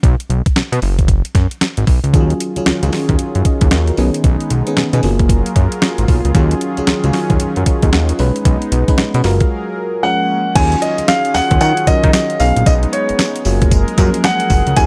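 New jack swing R&B at 114 BPM in Eb minor, this punchy, slick passage rides swung sixteenths, with a crisp, overdriven 8-bit drum machine (thumpy kick, fat snare, hi-hat, tambourine and crash) and a thick, saturated sawtooth bass with a filter pluck, both up front from the start. At 2.1 seconds a glassy, bell-like FM electric piano and a smooth, detuned analog pad, each treated with chorus, bring in lush chords moving through Ebm11, B69 and Gbmaj9. During a short break, an intimate grand piano takes up the melody at 10.0 seconds with audible action noise and long sustain, all set in a digital ambience.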